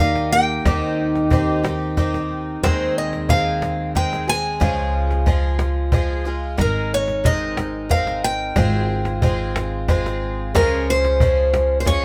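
A moderate studio reverb gives this short cut from a longer acoustic folk piece a natural, close-knit sound, with a peaceful, gentle mood at 91 BPM in 3/4 and tuning set to A4 = 437 Hz. A picked steel-string acoustic guitar with old strings carries the melody up front, while a bright, shimmering twelve-string guitar plays octave-doubled accompaniment over a growly, thumpy pizzicato upright bass. A snappy cajon, played with soft hands, enters at 0.2 seconds as the chords move from Eb through Ab/Eb, Db and Fm/Ab.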